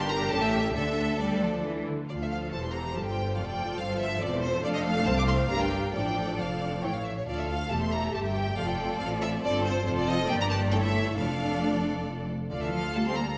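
A clear, up-front first violin section carries the melody from C5 to D6 in this stormy, urgent excerpt from a quick classical-period movement in D minor at 138 BPM in 3/4 with a rubato feel, as close, warm second violins sing a smooth second line, lush violas add expressive accompaniment, a rich cello section sits in the background, and a distant double bass section anchors the bass, all bathed in a wet scoring-stage reverb with a 1.9-second tail over a progression that moves from D minor through F, G minor and A7/G before settling back on D minor at 12.5 seconds.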